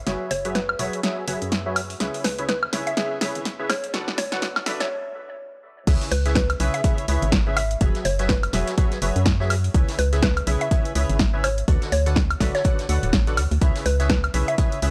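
A swung 4/4 groove drives this bittersweet, energetic piano house excerpt, as a hollow, ring-modulated organ stab riff and a dark, organ-like FM bass pump against the sidechain while a punchy, overdriven analog drum machine plays a fill of hi-hat, snare, crash and woodblock. A woody, warbling mallet pluck carries a short melody through chorus and analog delay, and the stab's filter sweep builds toward a brief break at 4.9 seconds. At 5.9 seconds the drop lands with an up-front, tape-warmed electronic kick and a very quiet brushed acoustic kit, all captured in a dry, gritty cassette sound over minor-leaning chords.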